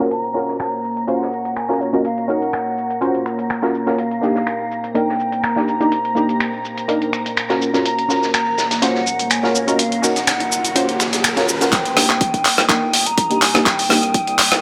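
A deep, moody ambient pad and muted, detuned dub chord stabs, both pumping under sidechain, open this smooth, warm deep house excerpt alongside a gritty, up-front sampler-style kit of finger snaps, handclaps, hi-hat, rim click and shaker, a silky background string pad and an acoustic kit of hi-hat and snare played with bundle sticks, sitting in the background. An airy, hollow jazz flute with vibrato and a chiff carries the melody through digital delay, while a filter sweep and an electronic riser build toward 11.7 seconds. There the chords turn to Cm7, the acoustic kit drops away and a deep, layered electronic kick arrives with a drum fill, followed at 12.0 seconds by a very quiet, smooth synth bass, all inside a lush hall reverb.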